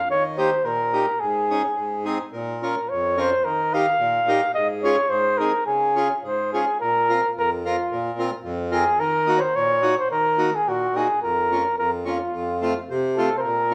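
This festive, jolly alpine folk tune, cut from a longer piece, moves in a loose two-beat metre with a rubato feel. A warm, vintage-toned flugelhorn with a soft attack carries the melody up front in a classical-style solo manner, while a reedy, hollow accordion with a boxy small-room character supplies the accompaniment, also placed up front. The duo plays live together in a large studio with a moderate reverb, and at 6.8 s the tune turns to a new section with a shift in harmony.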